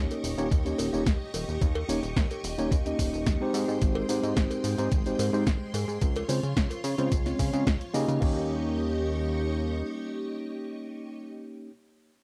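A gritty, thumpy electronic kick drum sits up front in this groovy, feel-good nu-disco excerpt, joined by a punchy house kit with tape-warm hats and a close, dry cowbell, the kick and kit carrying a cassette-tape grain. A glossy, retro chorused synth bass and a clean tine electric piano with tape echo ride through Eb7, Abmaj7 and Dbmaj7 while a lush, full-bodied string machine pumps against the kick. The chords return to Eb7 at 8.2 seconds, and the drums drop out at 8.3 seconds, leaving the keys, strings and bass to carry that final chord.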